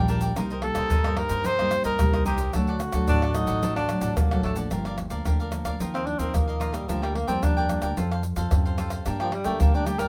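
A breathy, mellow trumpet opens this bittersweet samba and choro excerpt, carrying the melody up front with a light vibrato over crisp, picked cavaquinho, fingerpicked classical nylon-string guitar with audible finger squeak, and a dark, woody, thumpy pizzicato upright bass on gut strings. A close, dry percussion section of egg shaker, pandeiro, tight surdo and tamborim, played with soft hands, joins almost at once and sits forward in the mix. At 3.1 seconds a whispered, intimate tenor saxophone enters as a second line, and the trumpet stops at 4.1 seconds. From 4.7 seconds the saxophone takes a jazz-style solo with vibrato and a soft attack, over harmony moving from Gm7 through Ebsus2, Bb6/D and F back to Gm. Moderate studio reverb gives the yearning mood a gentle sense of space.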